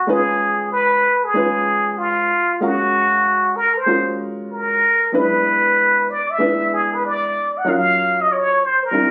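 Swung sixteenths at 95 BPM in 4/4 carry this nocturnal, mellow hip hop excerpt, where a plunger-muted trumpet with a breathy, whispered wah-wah voice sings a jazz-style solo melody over a dark, vintage grand piano whose short-sustained chords move from Db7 through Gbmaj7 and E7 to Ebm7, all caught on a phone in a club-like room with light reverb and compression.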